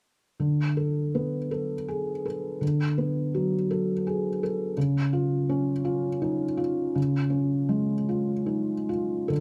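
A felt-muted upright piano plays alone from 0.4 to 9.4 seconds, its thick felt giving a soft, dark, mellow tone with audible action noise, heard up front through close, detailed microphones in a dry room. This short neoclassical minimalist piece, cut from a longer work, moves in a rubato 3/4 at roughly 72-84 BPM, tuned to A4 = 444 Hz, ranging from C#3 to A4. The mood is hopeful and peaceful, with harmony shifting from D6 to C# at 4.8 seconds.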